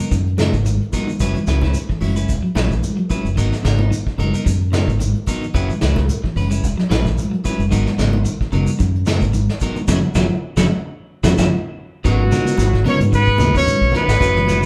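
A roomy recording of a band playing live in one room, bathed in wet studio reverb, captures a funky, driving afrobeat groove with a swung sixteenth feel. Clean, picked guitar arpeggios with spring reverb sit in the background against twangy, slightly broken-up guitar stabs, while a punchy fingered bass through an envelope filter, a dark, smooth brush drum kit with a tight kick, grainy shekere and distant, ringing congas carry the pulse into a band accent and drum fill ending at 12.0 seconds. There, an up-front trumpet with vibrato takes the melody, a bright, forceful alto saxophone adds a second line in the background, and a reedy electric piano with fast tremolo joins the accompaniment.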